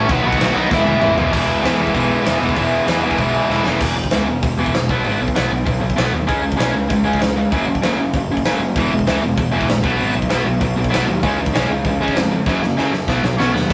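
A rowdy, rebellious punk rock excerpt opens with a crunchy overdriven guitar melody over a bright, up-front distorted electric guitar riff, a double-tracked, compressed fuzz guitar and a sludgy guitar in the background, and a punchy fuzz picked electric bass, as a big acoustic rock drum kit with a medium-tuned snare, crash, hi-hat and toms joins at 0.1 s and drives fills through the straight beat, the sludgy guitar returning at 8.8 s, all captured in a rough rehearsal-room sound with warm saturation and a small room's short reverb.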